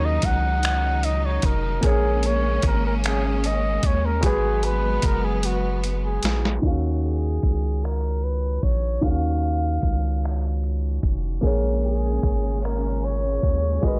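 A dry, gritty hardware recording with a low-pass filter and studio reverb carries this late-night, sultry slow six-eight R&B excerpt in Eb minor at 50 BPM, where a breathy, mellow flugelhorn with light vibrato and scooped notes takes a jazz-style solo through the opening 6.6 seconds over a warm grand piano, a round, deep analog bass saturated by tubes, a dusty, compressed sampler-style kit with a thumpy kick, finger snaps and a drum fill ending at 6.6 seconds, and lush, bright bowed strings that drop out at 6.6 seconds and return at 11.4 seconds as a filter sweep runs through the second half.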